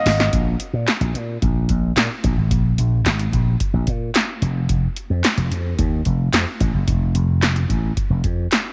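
Early-eighties boogie funk with a slick, late-night mood, where a bright, growly slap bass pushed through an envelope filter sits up front beside a dry analog electro drum machine with a deep kick, punchy snare, metallic hats and handclaps, all set in light digital ambience after a brief opening drum fill in this cut from a longer piece.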